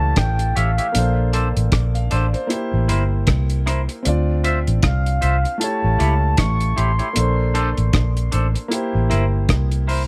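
A dark, round, foam-muted electric bass sits up front in this bittersweet lovers rock reggae excerpt, amped and punchy between G1 and D2 at a relaxed 77 BPM in 4/4 with a swung sixteenth-note feel. The deep drum kit enters at 0.2 s, dry, muffled and lo-fi, with a tight kick, rim click and hi-hat under a rolled-off top. A grand piano with audible action noise gives an intimate, natural accompaniment, while a clean, twangy electric guitar adds fingered stabs from 0.6 s. Carrying the longing melody is a reedy, woody FM lead with a soft attack, a sustained tone and a noise layer, treated with chorus and tape echo; it stops at 7.5 s. Studio reverb frames the band as the chords cycle through A7, Bbmaj9, C7 and Dm9.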